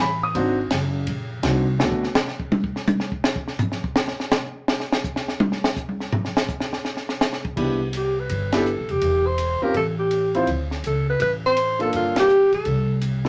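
This playful, swinging jazz fragment, cut from a longer small-group swing and bop performance, opens with intimate grand piano and pizzicato upright bass over a compact cocktail drum kit at a brisk 166 BPM in 4/4 with a swung eighth-note feel. The piano briefly sketches a G#7#11 and a D6 before the drums take a solo from 1.8 s to 7.6 s. The kit sounds dark and smooth, with a high-tuned snare, a tight kick and a rolled-off top across snare, kick, toms, hi-hat, ride and crash. The woody, thumpy, steel-strung bass returns at 7.4 s, and the piano rejoins at 7.6 s in C major, moving through chords such as Cmaj9, Am7 and Gm9, while two band accents punctuate the phrase. The mellow alto saxophone enters at 8.0 s with a short, up-front melody full of vibrato and scooped notes, its gentle top end sitting above the piano's audible action noise. A wet club reverb of 0.8 s gives the group the feel of a small, lively room.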